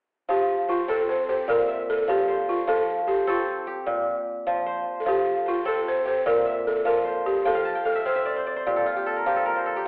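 A woody, buzzing balafon carries the melody, played with soft rubber mallets, over crisp, ringing fingerpicked kora arpeggios in this warm, joyful West African traditional fragment in F major at 100 BPM in a straight 12/8, swaying between F and Bb5 chords in a wet recital-hall reverb with a telephone-like tone, and the kora adds a fill from 7.5 seconds to the close at 9.9 seconds.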